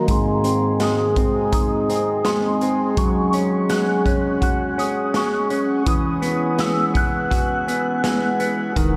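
Ethereal and hazy, this dream pop excerpt at 83 BPM drifts over Ab, Gbsus2 and Eadd9 chords, with a dark, clean semi-hollow electric guitar playing up-front fingered arpeggios through lush chorus and tape echo, a soft, flute-like tonewheel organ holding sustained chords with key click and slow rotary speaker, a shimmering, warbling vintage FM bell carrying the high melody with ensemble chorus, phaser and tape echo, a gritty, saturated garage drum kit with punchy kick and pumping small-room sound, and a round sine sub bass arriving only at 8.8 s, all soaked in a huge ambient reverb under a filter sweep that runs the full 9 seconds.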